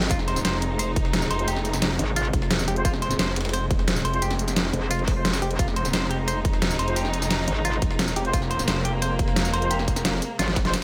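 Lightly reverberant digital ambience frames this tense, aggressive excerpt of dark technical drum and bass at 175 BPM in F minor, where a punchy, overdriven electronic kick and an up-front dubstep kit with a deep snare drive the groove over a very quiet, gritty, pitched-up jungle sampler-style kit, a thick detuned saw bass pumps beneath a metallic FM wobble bass that drops in and out, rich bowed strings hold sustained chords with sidechain pumping, a twangy clean electric guitar picks arpeggios through phaser and digital delay, dark distant brass stabs enter at 1.4 seconds, and a drum fill arrives at 10.4 seconds.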